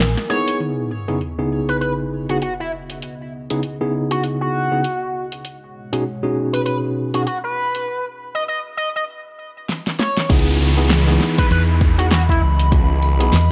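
At 99 BPM with a 16th-note swing in 4/4, this playful, funky glitch hop piece in C# minor pairs a deep, moody analog pad and a clean tine electric piano (both sidechain-pumped) with an edgy, tearing sync lead on cassette tape and delay and tape-warm pop drums with a fat snare and metallic hats, then drops at 10.3 s into a swirling phased detuned saw bass and a punchy electronic kick, joined at 11.5 s by a round hollow-body electric bass.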